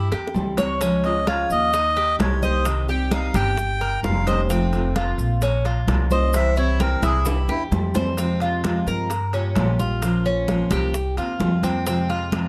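A reedy, breathy melodica carries the melody up front until 7.6 seconds in this danceable, nostalgic excerpt of Cuban son and guajira in F minor at 130 BPM, over a woody, thumpy pizzicato upright bass with gut strings. A metallic Cuban tres with double strings plays arpeggios alongside a picked steel-string acoustic guitar with fresh strings, while thick-skinned congas, tight high-tuned bongos, grainy maracas and ringing metal-shell timbales sit in the background. Drum fills mark the opening and the lead-in to the second section at 8.2 seconds, where the chords move through C7sus4 to Fm, captured with close, detailed microphones and light reverb.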